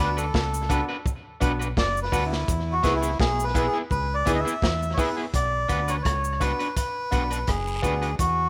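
Laid-back and meditative, this short roots reggae excerpt sits at 84 BPM in a straight 4/4, in B dorian, moving from Bm to E and back to Bm as it passes from one section to the next at 5.3 seconds. A reedy, breathy melodica carries the melody up front, close and dry in its own sound yet trailed by tape echo, with a solo running through the first 5.3 seconds. Beneath it, a deep dub bass with a round, dark tone holds down the low end, while an electric guitar at the edge of break-up, twangy and picked, adds accompaniment with its own tape echo. A bright upright piano with a woody, brilliant character supplies stabs, and cabasa and guiro sit low in the mix as close, dry percussion. The crunchy breakbeat kit enters at 0.3 seconds, its hi-hat, kick drum, rim click and snare drum sounding gritty and saturated with a rolled-off top, all within a light reverb and a rough home-demo mix.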